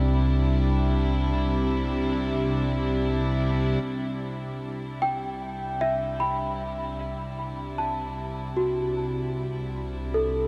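A straight 4/4 pulse at 76 BPM underpins this weightless, peaceful ambient passage in C lydian, cut from a longer piece. A close chamber string section with a reedy gut-string tone and light vibrato holds sustained chords through shimmer reverb over an earthy, nasal double bass section set distant, while a resonant sawtooth-and-sine drone with moving overtones hums in the background until 3.9 s. From 3.8 s the harmony shifts from C to C6 as the strings and bass fade in, and at 5.0 s a worn, slightly out-of-tune celesta enters up front with bell-like arpeggios bathed in tape echo, all within a dark production and a huge 8.2-second reverb.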